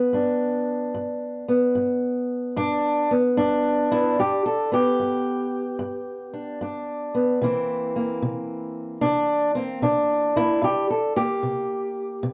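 Gritty and swaggering, this short excerpt of acoustic country blues moves at an unhurried 74 BPM in 4/4, with a loping swing on the eighth notes. A lone fingerpicked guitar carries everything: an old ladder-braced acoustic with a boxy, dark tone that sits up front in the mix. Its range reaches from a low G2 up to A4, and the instrument is tuned slightly sharp to A4 = 441 Hz. The harmony rests on G before shifting to C7 at 7.4 seconds, and the guitar plays throughout the full 12.3 seconds. A wet studio reverb with a short decay surrounds it, and the overall production leans dark and warm.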